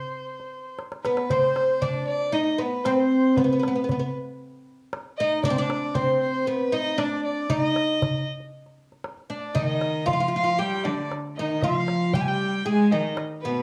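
Arabic maqam ensemble music in C maqam nahawand, this short passage cut from a longer piece moves at 116 BPM in a straight 4/4 with a longing, soulful mood, tuned to A4 = 438 Hz. A bright, woody fretless oud carries the melody up front, its plectrum-plucked double strings sitting in a range from B3 to Ab4. Above it, a dark, earthy violin with light vibrato and a smooth top plays a bowed second line, and a darbuka with a clay shell and natural skin adds close, dry percussion under soft hands, with a drum fill from 0.8 to 1.3 seconds. At 9.6 seconds a clear cello enters with its own bowed second line down low, joining the oud and violin, which share a cassette tape coloring. The whole ensemble sits in a moderate small room with a short reverb, giving the home cassette recording an intimate, lived-in character.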